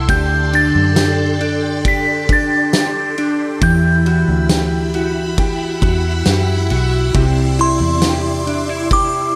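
Dream pop at 68 BPM in E minor, melancholic and haunting, this short cut from a longer piece sets a crystalline FM synth bell melody with chorus, tremolo and delay over swirling phased string-machine chords, dark clean fingered electric guitar arpeggios with analog chorus and delay, a round foam-muted fingered electric bass, and a loose, roomy indie drum kit of kick, fat snare, dark ride cymbal and tambourine, moving through D7sus4, Emadd9 and Cadd9 in light studio reverb.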